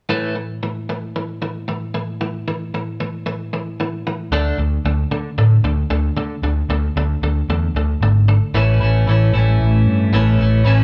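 A bright, twangy twelve-string electric guitar leads this anthemic, cathartic rock excerpt, ringing out clean, compressed arpeggios up front from the opening moment. At 4.3 seconds an overdriven picked bass joins in, its dark, round and punchy tone sitting prominently in the mix beneath the chiming strings as the harmony moves from A to D. Near the close, at 9.4 seconds, a single bowed cello enters in the background with a rich, reedy, gut-string, period-style voice, adding a melodic line shortly after the music has shifted into a new section. The performance feels like a band playing together in one room, touched by light reverb, and the clip is cut from a longer piece.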